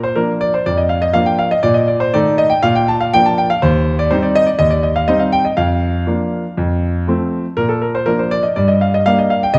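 Graceful and cheerful, this short cut from a classical-period piano sonatina in a straight 4/4 features a clear, smooth concert grand played solo and up front, its deep bass and short, vintage-toned sustain set in a moderate recital hall reverb within a dark production, as the harmony moves through gently coloured chords before settling on Bb at 7.6 seconds and turning to Gm at 8.6 seconds.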